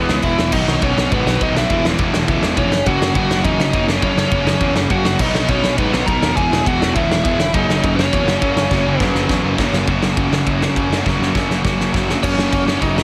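A biting, overdriven lead guitar sits up front in this upbeat, energetic punk rock excerpt, carrying the melody until 9.5 seconds and returning briefly at 12.2 seconds. Behind it, two bright, compressed distorted electric guitars, one double-tracked, join a dark, sludgy overdriven guitar and a punchy fuzz bass on driving riffs that run through the chords E, B and F#. A loose, roomy indie drum kit with dark cymbals and a rolled-off top plays up front, adding fills near the close of each section, all under light reverb and a heavily compressed radio sound.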